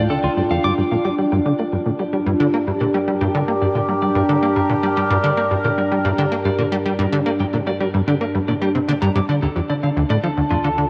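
This expansive, hypnotic stretch of ambient, sequencer-driven space music opens on a bright, resonant pad of detuned, wave-folded sawtooth chords treated with chorus and phaser, alongside a punchy, funky analog bass riff with a fast, decaying pluck, lush chorus and tape echo, a warm drone in the background, and a very quiet pulsing gated texture that stops at 0.8 seconds. A clean, picked, compressed electric guitar enters at 0.1 seconds, playing arpeggios through tape echo until 10.8 seconds, and from 0.8 seconds it fades in together with the drone. A wet plate reverb soaks the whole dreamy mix.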